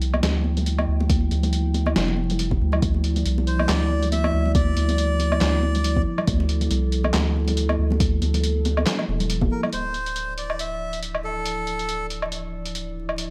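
A half-time 4/4 groove at 139 BPM with a loose 16th-note swing drives this meditative, cavernous deep dubstep excerpt in D minor, tuned slightly flat to A4 = 437 Hz: a gritty, pitched-down, sampler-style trip hop kit of handclaps, hi-hat, snare and woodblock sits beside soft, high-tuned background congas treated with dub echo, while a layered electronic kick joins at 1.1 seconds. An up-front, round sub bass and a dark, detuned analog pad opening on a Dmadd9 chord with chorus and a moving notch fill out the low and middle ground. A reedy, breathy melodica enters at 3.5 seconds with its own dub echo and returns later, the congas drop out at 9.7 seconds, and light digital reverb and vinyl crackle frame the whole piece.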